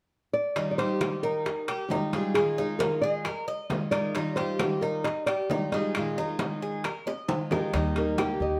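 A straight 4/4 groove at 134 BPM carries this relaxed, sunny excerpt of Cuban son and guajira in Eb major, alternating Ebadd9 and Bb7sus4. A fingerpicked nylon-string guitar sings the melody up front from 0.3 s over a full-bodied jumbo steel-string guitar's picked accompaniment and the metallic, double-strung arpeggios of a Cuban tres. Ringing congas, saturated metal-shell timbales and woody claves (from 1.0 s) sit in the background, and tight, high-tuned bongos stay very quiet. A drum fill leads to a dark, thumpy gut-string upright bass that lands up front at 7.7 s on the closing Eb chord, all within a moderate large-studio reverb.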